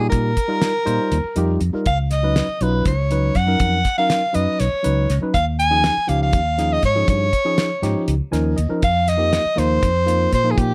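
Set in a straight 7/8 at 241 BPM counted in eighths, this nocturnal, slick electric jazz fusion excerpt in F minor moves through sus4 ninth chords on F, Db and Eb, with a damped 70s drum kit of hi-hat, fat snare and tight kick sounding dry, dark and up front from 0.1 seconds. A breathy soprano saxophone carries the melody between G4 and Ab5 in an intimate, whispered subtone with scooped notes and a touch of slapback echo. Beneath it, a worn, slightly out-of-tune tine electric piano, lightly overdriven through a combo amp, comps and adds a short fill at 8.1 seconds, while a growly, amped fingered electric bass holds the low end under light reverb.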